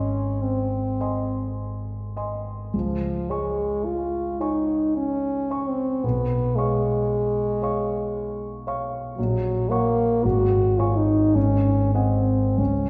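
In a rubato 3/4 at a slow 46-58 BPM, this serene romantic classical duo in D-flat major (tuned to A4 = 439 Hz) sets a warm French horn melody up front over a dark, mellow concert grand piano with deep bass. Both parts play throughout the 12.9 seconds, with the harmony moving from A-flat through D-flat colours to a closing A-flat seventh. A lush scoring-stage reverb places the listener further back in the room and gives a soft, rounded top to this passage cut from a longer piece.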